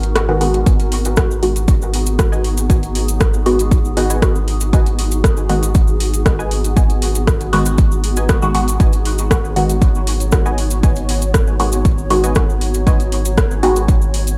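A straight 4/4 groove drives this hazy, deep dub techno excerpt: a deep house kit of metallic hi-hats and rim clicks plays from the outset, and an overdriven, up-front electronic kick enters at 0.7 s alongside a close, grainy cabasa, while a round, soft sub bass holds G#1 beneath a cloudy, evolving granular pad, a muted, detuned chord stab coloured by phaser, cassette tape and dub echo, and a brighter stab riff tucked in the background, with the pad, bass and both stabs breathing under sidechain pumping.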